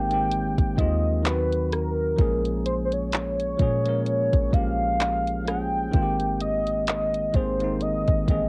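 A velvety synth lead carries the melody in this dreamy, smooth slice of contemporary R&B, its detuned, wave-folded tone sitting up front with chorus and vibrato and a cassette-tape color. Beneath it, a bell-like tine electric piano plays bright, clean accompaniment, also touched by tape character. A soft, round 808-style bass adds deep, dark sine tones that decay after a fast attack. A produced electronic drum kit joins at 0.1 s with a gentle kick, hi-hat, rim click and handclaps, swung on the sixteenths and treated with the same tape grain. The harmony moves from Abmaj9 through Ebm6 and Bbm7 before returning to Abmaj9 at 5.9 s. The dry sound of a home cassette recording gives this excerpt from a longer piece an intimate, lo-fi feel.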